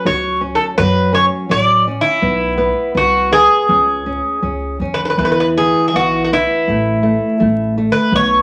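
A Greek bouzouki and a fingerpicked flamenco guitar open this brief fragment of a longer piece together, with an upright bass joining a moment later at 0.1 seconds. It is a longing, passionate fado-style ballad in 2/4, played with a rubato feel around 82 BPM. The bouzouki carries the melody up front, its picked double strings and occasional octave-doubled courses giving a metallic shimmer. Beneath it, the guitar supplies flamenco-flavoured accompaniment in a warm middle register. The pizzicato bass adds dark, woody, thumpy gut-string notes low in the mix. A wet studio reverb and a layer of vinyl crackle colour the recording as the harmony moves from F#5 through A69, G#7alt/B and C# before settling on E5 and A5, and all three instruments play through to the close at 8.4 seconds.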